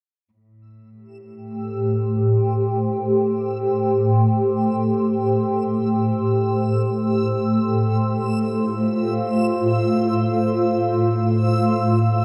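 Steeped in a dark, cavernous cathedral reverb, this reflective, spacious ambient fragment centres on an ethereal, shimmering pad up front that enters at 1.5 seconds with evolving, chorused and phased sustained chords moving from Am7 to F/A, while an earthy bowed chamber cello section fades in from 0.3 seconds to hold the bass in the background and a bright, reversed, detuned granular texture swells dreamily from 1.2 seconds high above.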